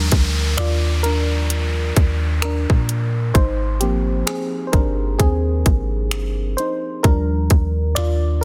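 An FM electric piano carries the lead through this romantic, dreamy contemporary R&B passage, cut from a longer piece. Its warm, dark, decaying tone has a fast attack and a noise layer, and it moves from Ebmaj9 at 0.0 seconds to Ab69 at 3.4 seconds before returning to Ebmaj9 at 7.0 seconds. Beneath it, a soft 808-style bass sits up front with a deep, round, sine-like body that fades after each note. The electronic trap drum kit, also up front, is produced: finger snaps, bright hats, a hard-clipped kick, and soft clipping on the snare, all over a slow 65 BPM in 4/4 with a gentle 16th-note swing. An electronic downlifter sweeps downward quietly in the background until 7.0 seconds, and the whole passage sits in a digital ambience with a dense, heavily limited modern master.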